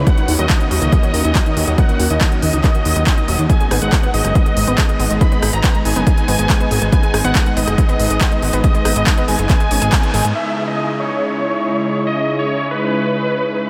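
A lush, detuned unison pad and a fat, sawtooth analog bass open this emotional, driving uplifting trance excerpt in G# minor at 140 BPM. They are joined at once by a huge, euphoric supersaw lead with phaser and analog delay, a round, nasal analog pluck playing filter-swept arpeggios in the background, and a big-room dance kit with crisp hats, handclaps, rim clicks and crash, all pulsing with sidechain pumping, along with a punchy, up-front electronic kick. After a band accent at 9.9 seconds, the drums, bass and pluck drop out by 10.4 seconds, leaving the pad and lead to sustain over a C#madd9 chord in a dreamy mix soaked in a vast, long-tailed reverb.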